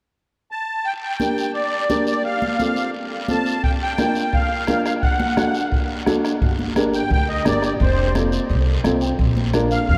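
A reedy, shimmering musette accordion sits up front and carries the melody from 0.5 seconds in this danceable, driving cumbia, cut from a longer piece in G minor at 173 BPM in a straight 4/4. A raspy, saturated guiro and bright, high-tuned congas fill in the percussion, while a dark, slightly detuned upright piano with a boxy, woody tone supplies the accompaniment and adds a brief fill near the end. A soft-beatered bombo joins at 3.6 seconds, and a thumpy pizzicato upright bass with gut strings arrives at 6.4 seconds as the music moves into a second section. The chords cycle through Gm, F, Bb and D before returning to Gm, F and Bb. Everything sounds as if played in a vast, echoing space, with a huge ambient reverb washing over the ensemble.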